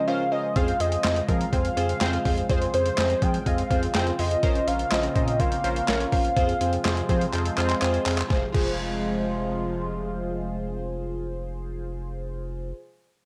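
Synth-pop in F minor at 124 BPM, melancholic and cool, cut from a longer piece. A velvety, detuned synth lead carries the melody with vibrato and portamento until 7.1 seconds, over a swirling phased pad and chorused sawtooth keys, while a round, deep bass and a gritty, pitched-down sampler-style drum kit with a thumpy kick and high-tuned snare enter at 0.6 seconds. Drums and keys share a fill at 7.3 seconds before the drums drop out, and the whole carries a cassette-tape haze and spring reverb like a home recording.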